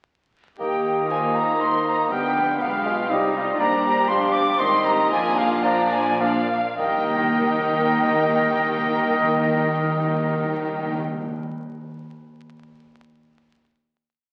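From 0.6 s a classical-period symphony orchestra sets off on a lively, cheerful movement in 3/4 and Eb major. A dark, woody violin section carries the tune with vibrato, an airy silver flute doubles it in unison and sixths, and a clear oboe, an intense second violin section and a vintage-toned bassoon add inner lines and chords in the rhythm of the tune, while violas, smooth cellos and a very quiet double bass section hold the harmony and bass beneath mellow French horn chords. Timpani strike single strokes on the bass note at the opening and again from 6.8 s as the rubato pace of 101-122 BPM, slowing from 2.9 s, arrives at a final Eb chord, the whole piece heard through a reverberant scoring-stage sound and the crackle of a very old 78 rpm record.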